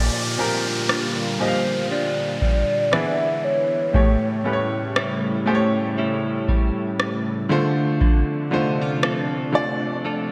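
Romantic and tender, this slow contemporary R&B excerpt at 59 BPM swings gently in 4/4 as a clear baby grand piano and a clean, direct-recorded electric guitar picking compressed arpeggios through subtle chorus and digital delay move over Bb6, E7, A7 and Dm7, while a thick detuned sawtooth pad pumps softly in the background, a downlifter sweeps through the opening 8.0 seconds, a booming analog drum machine with deep kick, rim click and gated reverb sits up front, and a hollow, woody clarinet-like synth lead with vibrato sings a brief melody from 1.4 to 4.5 seconds, all bathed in a lush hall reverb and bright 1980s-style digital sheen.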